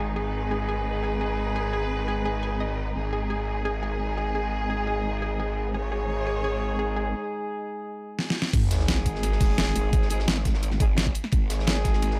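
A growling, wobbling, overdriven bass drives this futuristic, mechanical dark technical drum and bass excerpt at 172 BPM in G# minor, joined by distant bowed chamber strings holding sustained chords with sidechain pumping, a round, chorused analog pluck playing background arpeggios through cassette tape and analog delay, and smooth-topped dark brass stabs through a low-pass filter. A break arrives at 7.1 seconds, and a deep-snared, overdriven dubstep kit with bright hats enters at 8.2 seconds alongside a drum fill that leads into the drop at 8.5 seconds. There a knocking overdriven electronic kick, a gritty breakbeat kit in the background, and a sub drop impact arrive in a small room with light reverb.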